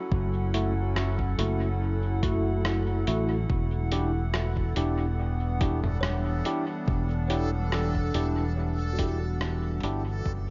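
A round, punchy fingered electric bass sits up front in this spacious, meditative ambient dub excerpt at 71 BPM in E dorian, joined by a deep, overdriven electronic kick and a muffled, compressed lo-fi sampler-style kit of hi-hat, rim click and toms sent through dub echo. A warbling, detuned tape-like pad holds sustained chords that move from F#m7 to Em7 at 3.5 seconds, while clean tine electric piano stabs ring out in dub echo and a very quiet, woody kalimba plays mellow arpeggios. From 4.4 seconds a reversed, granular swelling texture adds a bright, dreamy shimmer before the whole piece fades out from 8.0 seconds.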